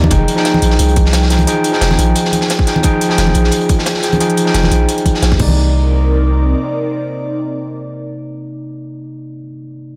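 Light reverb and a small room ambience frame this echo-heavy mix, a short cut from a longer liquid drum and bass piece with a soulful, rolling mood in a straight four. Up front, an overdriven tine electric piano plays gritty accompaniment through a combo amp, trailed by dub echo from start to finish. Behind it, an airy, breathy pad holds soft, detuned chords with chorus and phaser, moving from Fm9 to Cm9 at 5.4 seconds. A deep, sine-toned 808-style bass sustains prominently until 6.5 seconds, while a crunchy, saturated breakbeat kit adds hi-hat and a medium-tuned snare, high-passed and sent into dub echo. A tight, tape-colored electronic kick and a layered garage kit with crisp hats and crash cymbal play alongside it, with congas echoing in the background, and all this percussion falls away by 5.5 seconds.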